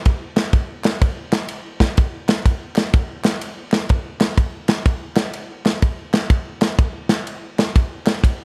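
A dry, dark-toned production carries this short, hopeful and soulful gospel groove with a swung feel, where an up-front acoustic studio drum kit with a punchy kick, medium-tuned snare and bright ride cymbal drives from 0.1 seconds, joined at 0.4 seconds by crisp group handclaps sitting distant in a large room.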